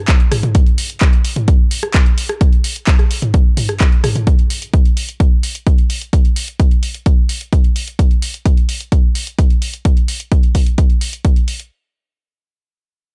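A dry, gritty hardware recording with little reverb opens this short house excerpt, trippy and driving at 129 BPM in a straight 4/4. A punchy, tape-warm analog kick sits up front from 0.1 s to 11.3 s, while a quieter analog drum machine supplies handclaps, hi-hat, rim click and toms through to 11.7 s.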